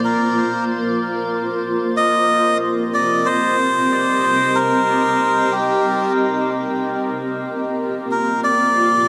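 A reedy, breathy melodica carries the melody through dub echo over a cloudy, evolving granular pad of sustained chords soaked in its own reverb, both playing throughout this meditative, hazy ambient fragment of a longer piece, set in a huge, wet reverberant space with a gently swung feel.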